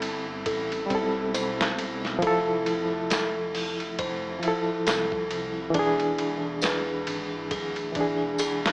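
A barky, reedy electric piano with tremolo and tape echo comps through this smoky, dark trip hop fragment from the first moment over muffled, pitched-down sampler-style drums with a thumpy kick, a deep, rumbling detuned saw bass and a tense, string-like drone in the background, while a delicate, tinkling music box with tape echo adds arpeggios from 0.5 seconds and a tambourine joins quietly at 1.3 seconds, all moving through Am7, Fmaj7 and E7 with light reverb and a small-speaker sound.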